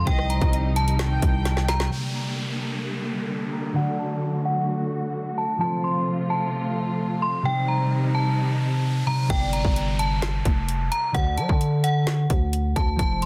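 A half-time trap groove in 4/4 opens this dark, brooding hip hop excerpt, with a hard-clipped kick, woody snare, rim clicks and metallic hats sitting up front beside a growling, buzzy 808-style bass. A bright, inharmonic FM bell carries the melody with chorus, digital delay and a low-pass filter, while a thumb-plucked concert harp rings underneath as accompaniment. Lush symphonic strings hold sustained bowed chords with vibrato. A distant, expressive studio violin section adds a soft second line with portamento and delay in the opening bars. After a drum fill, the beat and bass drop out at 1.9 seconds, leaving bell, harp and strings under a filter sweep, electronic downlifter and riser effects, and a riser building from 6.6 seconds. Drums and 808 return at 9.3 seconds for a final section over a dense, heavily limited modern master, while the harmony in G minor cycles through Cm, Gm, D and F.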